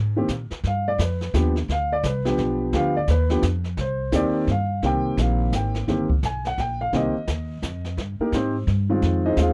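A swinging waltz pulse at 172 BPM in 3/4, with a moderate lilt on the eighth notes, drives this cool, moody jazz piano trio, cut from a longer piece and tuned to A4 = 444 Hz. The plucked upright bass starts things off at 0.0 seconds, woody and up front, with the character of steel strings. The upright piano joins at 0.2 seconds and carries the melody as a solo throughout, its intimate, boxy tone showing audible action noise and long sustain. A brushed kit enters at 0.3 seconds, sitting lower in the balance, its medium-tuned snare, boomy kick and hi-hat giving a natural studio-room feel. The harmony moves from a chordless opening into G7, then passes through Cm7 and Fsus2/G, returns to Cm7 and reaches Fm7 near the close, all captured in a dry, close recording in a 1970s studio manner.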